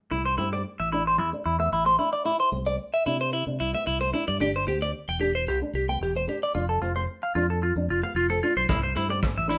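Highlife guitar band in a warm, joyful mood, where a bright, twangy electric guitar on the edge of break-up plays up-front arpeggios through a phaser over a dark, boxy fingerpicked ladder-braced acoustic guitar and a round, fingered electric bass, with a vintage drum kit of hi-hat, punchy kick and rim click entering only at 8.7 seconds, all captured live in one room with moderate studio reverb in this fragment cut from a longer piece.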